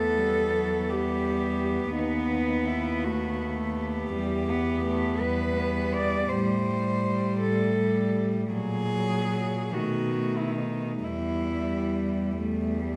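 A close, up-front single cello carries the melancholic melody with light vibrato and an airy sul tasto bow, leading a solemn, lyrical classical piece for cello ensemble in E minor, a fragment of a longer work. The tempo breathes with rubato at 44-57 BPM in a lilting 6/8, and the harmony moves from Em through B7/D# and Am7 toward a return to Em at 11.0 seconds. Beneath it, a pure, distant second cello line and a floating accompaniment cello blend their rich, soft-edged tone, while an intimate bass cello anchors the ensemble with a warm, bowed low end in a moderate recital hall reverb.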